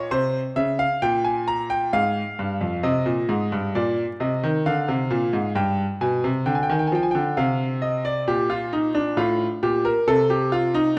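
A bright, up-front concert grand piano plays alone through this baroque-style two-part invention in C minor, a driving, serious classical piece moving at 66 BPM in a straight 3/4. Its natural tone carries deep bass beneath a brilliant upper register as the harmony passes from C7 and Fm/Ab through Dm7b5 and G7, with a new section arriving at 2.8 seconds and the passage closing on Am7b5/C. A wet recital hall reverb surrounds the instrument, and a layer of vinyl crackle sits over this 11-second cut from a longer piece.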